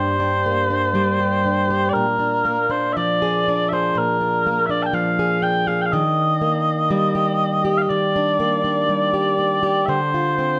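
Haunting and full of longing, this Celtic slow air unfolds at 60 BPM in 4/4 with a free, rubato feel, cut from a longer piece. Mellow small bagpipes carry the solo melody up front, their sweet, continuous tone shaded with vibrato. A fingerpicked, plugged-in steel-string acoustic guitar accompanies throughout, its boxy, parlour-style voice also sitting close and present. The harmony moves from Gm to Bb7 at 1.9 seconds, settles on Ebmaj7 at 5.9 seconds, and reaches Dm7 at 9.9 seconds. Close, detailed microphones capture both instruments inside a moderate recital hall reverb that lends the brief passage a gentle sense of space.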